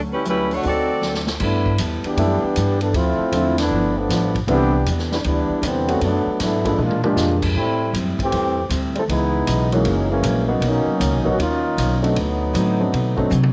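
Light reverb and a small-room ambience frame this brassy, energetic big band swing excerpt. A warm saxophone section carries the melody only until 1.3 s, and from 1.4 s a clear, smooth-topped trombone section with light vibrato takes a solo up front over woody upright piano, thumpy pizzicato upright bass and a full-bodied picked steel-string acoustic guitar in the background. The swinging drum kit, with its punchy kick and medium-tuned snare, adds short fills along the way.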